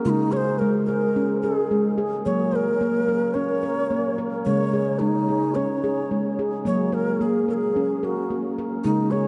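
Gentle and hypnotic, this meditative world excerpt sets ringing nitrided-steel handpan arpeggios, struck with the fingertips and placed up front in a boxy small-room tone, alongside a low, airy wooden Native American-style flute melody with crisp chiff, expressive vibrato and an analog delay, all soaked in a huge, dreamy ambient reverb with an 8.0-second tail.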